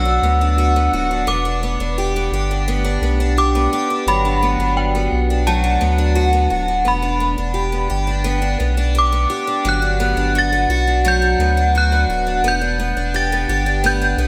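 From the opening moment, a ringing, inharmonic vintage FM synth chime carries the melody through ensemble chorus, phaser and delay, above a bright, boxy, octave-doubled twelve-string acoustic guitar picking shimmering arpeggios with audible finger squeak and a deep, saturated sub bass up front, set in a lush hall reverb as this blissful, ethereal dream pop excerpt moves between Gmaj7 and Em7.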